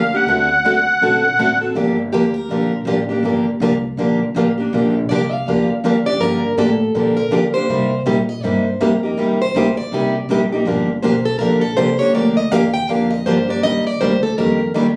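A bright, finger-squeaking steel-string acoustic guitar takes a fiery, virtuosic jazz manouche solo from 1.8 s in this swinging cut from a longer piece, after a brief reedy, shimmering musette accordion phrase up front opens it, with a woody, thumpy gut-string upright bass plucked underneath and a plugged-in steel-string guitar adding a second line mainly from 5.1 s, the band heard through club reverb as if captured on a phone in the room.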